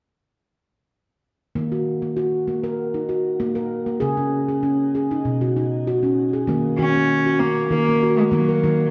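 A ringing, airy handpan played with the fingertips sits up front with gentle, hypnotic arpeggios through this meditative world piece from 1.6 seconds, joined at 6.8 seconds by a reedy, gut-string bowed cello melody with light vibrato, both bathed in shimmer reverb, the cello also carrying tape echo, within a wet echo chamber and the soft grain of cassette tape.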